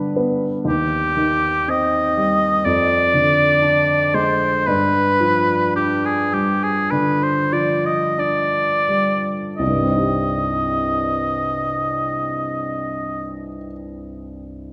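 Romantic classical music for oboe and baby grand piano, solemn and melancholic in a flexible rubato that slows over the first 9.6 seconds, as the warm, long-sustaining piano accompanies from the start and a clear oboe with light vibrato sings the melody up front from 0.7 to 13.3 seconds, moving through a dark chord progression that comes to rest on C minor at 9.6 seconds, all within a moderate concert hall reverb in this short excerpt of a longer piece.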